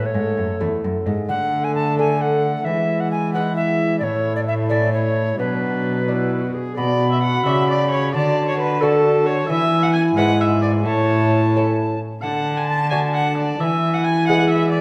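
A solemn, rustic Renaissance-style consort dance in a straight 6/8 opens with all five players together: an airy wooden alto recorder carries the melody with vibrato and a tongued chiff, while a distant, gut-strung viola with light vibrato traces a reedy second line. Beneath them a bright, delicate fingerpicked lute with doubled strings sits in the background, a warm trombone adds classical-style support, and a close, bowed cello grounds the bass with a rich period tone. The same section repeats from 6.8 seconds, and the consort is heard through a dark, wet recital-hall reverb in what is cut from a longer piece.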